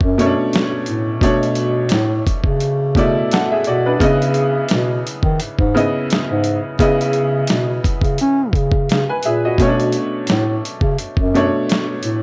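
Introspective and late-night, this R&B and neo-soul fragment in B dorian moves at 86 BPM with a lightly swung 16th feel, as a dark, breathy bass clarinet with light vibrato carries the low line in a punchy, close-miked jazz style, a bright, worn grand piano with short sustain comps through Bm9 and C#m9 chords, and a gritty, compressed sampler-style drum kit with a thumpy kick and medium-tuned snare adds overdriven grit from a small room, all three parts sitting up front in a dry mix.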